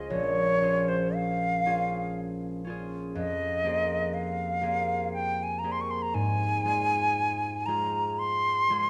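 A concert harp opens this short, luminous passage cut from a longer classical piece, its fingerpicked, ringing strings up front and reaching from Bb1 to C5. A bright silver concert flute joins at 0.1 seconds to carry the melody between C5 and Db6, sounding airy and expressive, with a soft attack, gentle vibrato and lifted highs. It sits slightly louder than the harp in this impressionist duo, which moves in a rubato 3/4 at about 59 BPM in Ab major. The pastoral harmony drifts from Bbm9 to Fm11 at 3.2 seconds and settles on Ab6 at 6.1 seconds. A moderate stage reverb lends the pair a sense of space within a dark, warm production, and both instruments play until the passage ends at 8.9 seconds.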